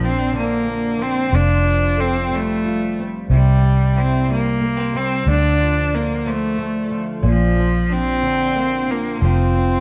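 A swaying 6/8 pulse at 61 BPM, counted in dotted quarters, carries this romantic pop piece in F major, cut from a longer work and moving through Bb, Fadd9, C, Dm and back to Bb before landing on F5 at 9.2 seconds. Up front, a single bowed cello sings the melody with a biting, intense tone and vibrato, trailed by tape echo, while a small, dark, fingerpicked nylon-string guitar, double-tracked, provides the accompaniment. Underneath, a foam-muted, round vintage electric bass played with the fingers anchors the low end, all within a dark production touched by light reverb and studio ambience.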